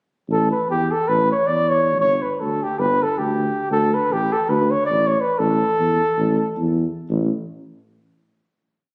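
A Balkan folk piece in a straight 9/8 at 318 BPM in eighths, wild and festive in A mixolydian, where a warm, lightly vibratoed flugelhorn with a smooth top and slapback echo carries a motif-based melody in sentence phrases from 0.3 to 6.8 seconds, over a dark, soft-attacked tuba playing root and fifth bass on the main beats until 7.3 seconds, both up front in classical style within a recital hall reverb that sounds as if caught on a phone in the room.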